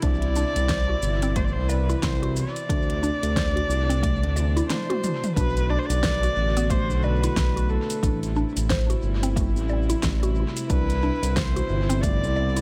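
An echo-heavy mix with light reverb and digital ambience frames this peaceful organic downtempo excerpt at 90 BPM in 4/4, swung on the 16ths and moving through Cmaj7, D5, Bm7 and Am7. A warm, intimate kamancheh carries the melody with light vibrato, portamento and an airy bow through tape echo. Beneath it sit a smooth, nasal synth bass up front, a woody, round mallet-like synth pluck playing arpeggios through chorus, phaser and tape echo, and a rich, floating chamber string section holding sul tasto chords with sidechain pumping in the background. A deep house drum kit with fat snare, metallic hats, shaker and toms, treated with overdrive, small room ambience and dub echo, plays alongside a punchy, overdriven electronic kick that stops at 12.2 s, and a drum fill at 4.4 s leads into a brief break before the second section opens at 5.4 s.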